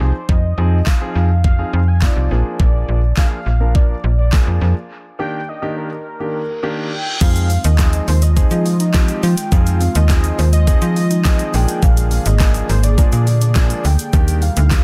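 A snappy, metallic FM slap bass sits up front in this energetic, driving dance-pop excerpt at 104 BPM in F dorian, pumping against the knocking kick, fat snare, handclaps and shaker of a smooth electronic R&B kit that enters at 0.3 seconds. A velvety, chorused synth lead carries the melody over an intimate concert grand piano with audible action noise, both trailing dub echoes through a dry, echo-heavy mix, as the chords cycle through Fm7, Bb7 and Ebmaj7. After a break marked by a reverse cymbal at 6.6 seconds, a very quiet round pluck and a grainy tube shaker arrive at 7.2 seconds, joined shortly after by a breathy, detuned pad.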